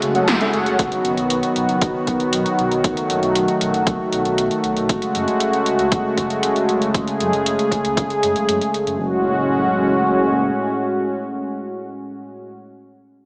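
Synthwave at 117 BPM in F# dorian, cinematic and driving: an up-front, smooth detuned analog pad holds chorused, pumping chords from 0.0 s over a deep, rumbling saw bass in the background, with gated-reverb 80s drums of metallic hats and snare, a brief brassy, round synth-brass stab with chorus and delay, and a punchy electronic kick entering at 0.8 s, all set in a lush hall through a small-speaker sound as the harmony moves between F#madd9 and B.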